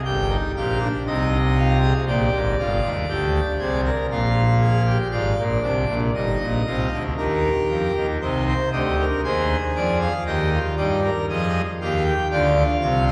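Heard from further back in a church with a wet, 3.0-second reverb, this solemn, serious fragment of a baroque-style three-part fugue sets a solo pipe organ up front on full organ, its mixtures giving a majestic, brilliant tone with romantic voicing across G1 to G5, and moves into a new section at 8.2 s.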